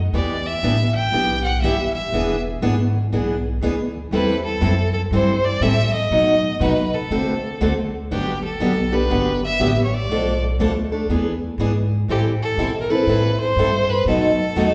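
A woody, thumpy pizzicato upright bass opens this lively, swinging excerpt of gypsy-jazz string swing at 121 BPM, joined at once by an up-front bowed violin with a clear, biting vibrato melody and a picked steel-string acoustic guitar with audible finger squeak, moving from E minor into G major at 8.1 seconds, all set in the lingering reverb of a recital hall.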